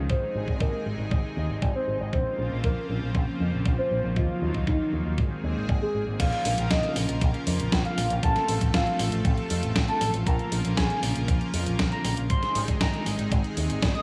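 Italo disco in Bb minor at 118 BPM, this bittersweet, melodramatic excerpt from a longer piece sets a lush, detuned unison pad with chorus and a bright, envelope-filtered fingered electric bass under a soft, round octave-layered synth lead that carries the melody through chorus, phaser and digital delay. A thumpy, tape-warm electronic kick drives the opening alone on drums, until a clean 12-bit drum machine enters at 6.2 seconds with a fat, up-front snare, hi-hat and crash cymbal dressed in gated reverb. The chords move from Ab through add9 colours before settling into Bbm, F/A and Ab, all within a light digital room ambience.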